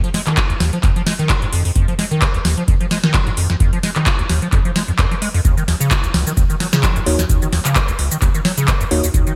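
A squelchy, resonant square-wave acid bass sits up front with an overdriven, chorused, tape-tinged riff that carries filter sweeps and delay over an Fm7 to Ebm7 change, giving this driving, gritty acid house excerpt its core. A booming analog drum machine with a tonal snare, metallic hi-hats, handclaps and shaker is treated with gated reverb, while a deep electronic kick joins at 0.4 s. Clean tine electric piano stabs with delay arrive at 7.1 s, all within a bright 1980s-style digital production with light reverb.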